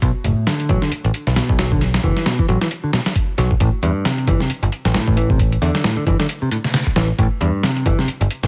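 A swung 134 BPM breakbeat groove in A dorian drives this funky, energetic cut from a longer piece, where a gritty, compressed soul sampler-style kit with a thumpy kick and medium-tuned snare sits up front beside a punchy, direct picked electric bass holding the low end, while a bright picked electric bass plays a riff through digital delay until 8.1 seconds over Bm7 moving to Am7 at 3.6 seconds, all in a dry mix dusted with vinyl crackle.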